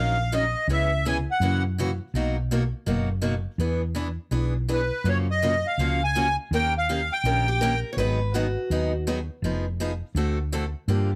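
Set in a light reverb, this short cut of virtuosic, swinging acoustic jazz manouche opens with a reedy, sweet accordion up front, its light tremolo tuning bathed in plate reverb as it carries the melody in brief phrases, returning at 4.7 seconds. Beneath it, a picked parlour steel-string guitar with boxy tone and audible finger squeak drives the accompaniment through a minor-key run of seventh chords, while a dark, round fretless electric bass with a hollow-body, amped character sits up front. A second bright, fresh-stringed picked guitar steps forward with a short line at 7.5 seconds.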